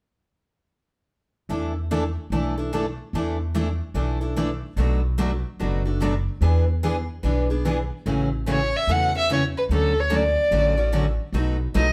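Acoustic string swing in the jazz manouche style, playful and lively at 146 BPM, with two picked steel-string acoustic guitars (one bright, one full-bodied) and a woody, thumpy pizzicato upright bass laying down the accompaniment from 1.5 seconds through chords like E7sus4, Bm7 and E7, and a close, expressive bowed violin with vibrato and portamento joins on top with the melody at 8.5 seconds over A6, Dmaj7 and B7, the whole band sounding live in one room with moderate studio reverb.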